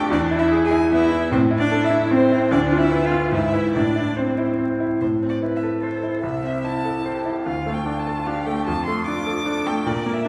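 A bright grand piano sits up front in this quick, urgent classical-period movement for piano trio, its brilliant accompaniment reaching from deep bass up into the middle register, with the action noise of the instrument audible up close. A single bowed violin carries the melody from 0.1 s in a high register, its tone rich and focused with vibrato. A single cello plays a second line in the middle register, clear, smooth and even, though it sounds distant. The music moves restlessly in triple time through minor-key harmony, from E to Am and on through Bdim/D and E/G#, then turns toward Dm and Dm/F after the phrase begins again at 5.0 s. The trio is heard from further back in a recital hall with a generous reverb, and a layer of vinyl crackle runs beneath this fragment cut from a longer piece.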